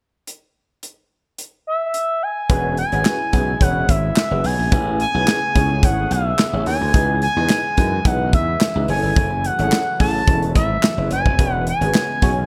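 A straight 4/4 groove at 108 BPM opens this smooth, feel-good slice of early-eighties boogie funk in E major. The acoustic studio drum kit starts at 0.3 seconds, with a tight kick, medium-tuned snare, hi-hat and handclaps. At 1.7 seconds an expressive synth lead joins up front: a mellow, soft-attack blend of sawtooth and triangle with chorus and vibrato, holding sustained notes between E5 and A5. From 2.5 seconds the band fills in. A bright, punchy slap bass sits forward, a warm baby grand piano with audible action noise and ensemble chorus adds intimate accompaniment, and a very quiet, detuned analog pad holds smooth, slow-attack chords underneath through E6, Amaj9, C#m7 and F#m7 before returning to E6. Light reverb and small room ambience frame the 1980s-style digital production, and the passage is cut from a longer piece.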